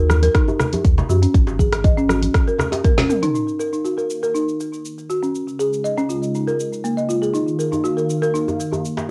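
Afro house with a spiritual, earthy mood, built on dry, close-miked hardwood marimba arpeggios that pump with sidechain and pass through cassette tape and tape echo, joined early by a round sine sub bass, a deep, up-front electronic kick, bright congas and a tight, cracking djembe, while a deep house kit with a woody snare and dark hats carries on, a drum fill lands at 2.8 seconds, a smooth, detuned sawtooth pad with chorus enters at 3.3 seconds, and the djembe returns at 7.7 seconds, the whole captured as a moderately reverberant home cassette recording.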